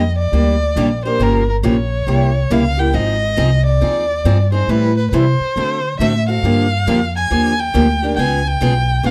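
A dark, warm club sound with a moderate reverb surrounds this lively, swinging slice of acoustic string jazz manouche, cut from a longer piece and moving at 138 BPM in 4/4 with a swing feel on the eighth notes. A single bowed violin carries the melody up front, its soft attack, vibrato and expressive portamento given extra glow by a plate reverb. Beneath it, an upright bass with gut strings plays pizzicato from the very start, its woody, thumpy tone sitting prominently in the mix. A bright, boxy parlour-style steel-string guitar joins at 0.3 seconds, picking out the accompaniment close to the listener. The harmony travels from Ebmaj9 through Gm7b5, C7b9 and Fm7, then on through Am7, D7 and Gm7 before landing on Db at 8.2 seconds.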